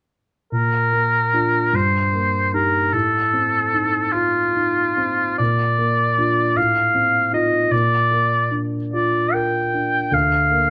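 In an uneven 6/8 at 50 dotted-quarter beats per minute, pulled freely with rubato, this tender, lyrical romantic classical passage in B-flat major sets a warm, vibrato-rich oboe singing the melody from F4 to G5, up front over a dark, mellow grand piano whose intimate, vintage accompaniment carries audible action noise, both heard from 0.5 to 10.7 seconds in a large studio's moderate reverb as the harmony settles on B-flat.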